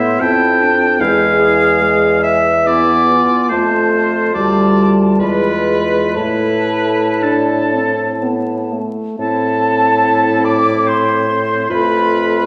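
A slow, rubato 3/4 pulse of 56-75 BPM carries this yearning, solemn romantic movement for wind quintet in A minor, a 12.5-second fragment of a longer piece. An airy, soft-edged silver flute with vibrato sings the melody from a distance over a clear, up-front oboe second line, while a bright clarinet sits in the background and a French horn with light vibrato fills out the accompaniment above a warm bassoon bass. The ensemble is heard from further back in a reverberant recital hall, with vinyl crackle beneath.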